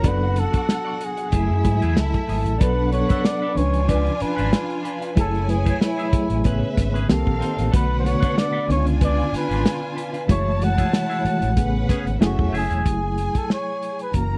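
A breathy, mellow flugelhorn carries the melody with light vibrato over a lush, bowed violin section that adds a second line with portamento, in this smooth, bittersweet excerpt of 1970s-style soul in F# minor at 94 BPM with a gentle 16th-note swing. A reedy, slightly out-of-tune electric piano with fast tremolo fills out the chords, moving through F#m9, C#7b9 and Amaj9, while a dark, picked clean guitar plays a wah riff until 12.9 seconds. Underneath, a punchy, overdriven fingered bass and a muffled, lo-fi drum kit with a tight kick sit up front in a dry, close studio sound.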